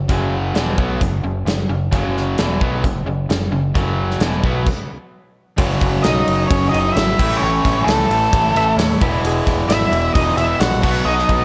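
A big arena sound with concert hall reverb gives this driving, sunny classic rock excerpt a spacious feel. A biting overdriven guitar and a hollow-bodied semi-hollow guitar, set further back, play the riff together over a growling, overdriven picked bass, each guitar carrying a slapback echo. The gated 80s drum kit sits up front with an airy, polished sound, a tight kick, a medium-tuned snare and bright crash, ride and hi-hat. After a full-band stop at 4.7 seconds, the groove returns, and at 6.0 seconds a dark octave-fuzz lead guitar enters with the melody, shadowed by a second fuzz guitar line lower in the background. At 8.6 seconds a clean, twangy lap steel guitar adds a short slide phrase before the chords move to B at 10.8 seconds.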